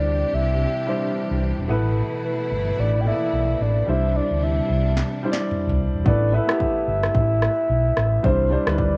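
A round, octave-layered synth lead carries the melody through this sunny, breezy afrobeats excerpt at 110 BPM, its soft tone thickened with chorus and tape echo and touched by vibrato. Beneath it, a dark, mellow grand piano plays accompaniment with a boxy, intimate character, audible action noise and long sustain, while a lush, bowed string section holds clear, focused chords until 6.0 seconds. A fingered electric bass sits up front with an amped, dark roundness, moving over Cadd9 and Asus2 harmony under a swung sixteenth-note feel. The deep house drum kit arrives at 5.0 seconds with a fill, bringing a punchy kick and snare, rim click and toms coloured by vintage 12-bit sampler grit and small-room re-recording. From 6.1 seconds a second section begins with the hi-hats muted, and the whole recording carries a worn, warbling cassette quality with pitch drift and little reverb.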